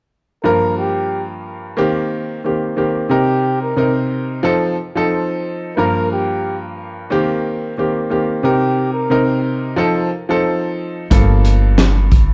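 Boom-bap hip-hop in G minor at 90 BPM with a dark, tough mood, where a woody, vintage upright piano with cassette-tape colour carries Gm7, Eb6, Cm7 and F7 chords from 0.4 seconds under a veiled, breathy bucket-muted trumpet that sings a whispered jazz melody with scooped notes and digital delay until 9.2 seconds, before a thumpy pizzicato upright bass and a gritty, saturated breakbeat kit with a punchy kick and high-tuned snare arrive at 11.1 seconds on a Gm9 in this lightly reverberant fragment of a longer piece.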